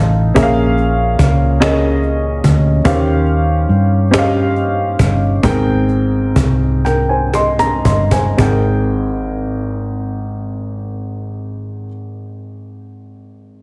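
A heavily compressed, radio-like sound with light reverb frames this short cut from a longer slow gospel piece in 6/8, moving in dotted-quarter pulses at 37-48 BPM in Ab major with a hopeful, soulful mood. A warm baby grand piano sits up front with a natural, short-sustained tone, carrying the accompaniment from the start through 13.6 seconds across a span from Ab1 to C6. Beneath it, a hollow-body short-scale fingered electric bass gives a dark, round, amped low end before dropping out at 11.9 seconds. A snappy acoustic cajon with snares, played with soft hands in a live room, joins at 0.4 seconds, adds a drum fill from 6.8 seconds, and stops at 8.6 seconds. The harmony moves through Bbm7, Eb13 and Abmaj9 as the tempo slows from 2.9 seconds, easing into a new section at 8.4 seconds where the piano and bass carry on.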